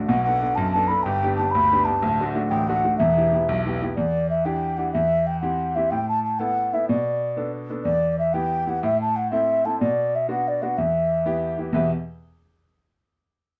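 A dark production in a moderate studio room frames this short cut from a longer Celtic folk piece in E minor, driving and lively at 124 BPM in 6/8 with a straight feel. Up front, a bright, worn grand piano with short sustain accompanies from deep in the bass up to the middle register through chords such as Bm7, G, D and Em, while a hollow, wooden baroque flute carries the melody high above from 0.1 seconds, distant and pure with vibrato and a crisp attack. At 4.0 seconds the harmony moves into a new passage through Em7, C/E, Asus2 and Am before settling back on Em.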